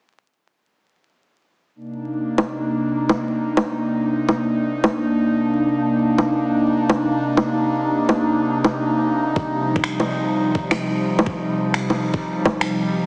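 An airy, breathy pad in C minor carries this rainy, ghostly future garage excerpt at 126 BPM, its detuned, mellow chords entering at 1.8 s with chorus and sidechain pumping while moving from Cm9 to Ebadd9/C. Overdriven electronic bongos and finger snaps sit up front from 2.4 s with a swung sixteenth feel, and a knocking, overdriven electronic kick joins at 9.4 s. Light reverb, vinyl crackle and a heavily compressed, small-speaker radio tone give the whole piece a worn, distant character.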